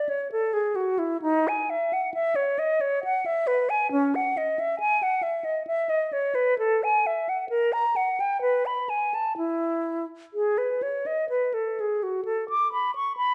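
Set in a lilting 3/4 at roughly 61-70 BPM, this baroque-style fantasia moves with a free, rubato feel that still carries a dance-like sway. A single concert flute plays alone throughout the 13.3-second excerpt, ranging from C#4 up to D6 in E major, tuned to A4 = 443 Hz. Its tone is airy and bright, with vibrato, soft attacks and an expressive line. Close-miked and placed up front, the flute sounds intimate and present. A moderate recital hall reverb, lasting about 1.4 seconds, surrounds it with a natural sense of space, and the passage is heard as a cut from a longer classical piece.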